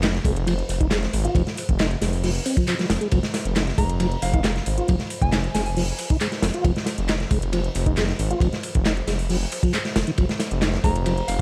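Raw and funky, this breakbeat excerpt rides a straight 136 BPM groove in F minor, holding on a single F minor chord throughout its 11.4 seconds. A crunchy acoustic breakbeat kit sits up front with a tight kick, a medium-tuned snare, dark cymbals and a gritty, saturated tone with a rolled-off top, while a quieter electronic house kit layers in handclaps and metallic hi-hats with a tape-tinged sheen. Underneath, a thick, menacing detuned saw bass beats against itself in the low register between F1 and Ab1, saturated and prominent in the mix. A mellow, round tonewheel organ plays a dark riff with audible key click, light overdrive, chorus vibrato, a fast rotary speaker and tape echo. A soft, pure FM synth bell drifts in high above at 3.8 seconds and again at 10.8 seconds, its gentle decaying tone coloured by chorus, phaser, small-speaker filtering, 12-bit sampler grit and tape echo. Small room ambience and a layer of vinyl crackle give the whole a dusty, lived-in texture.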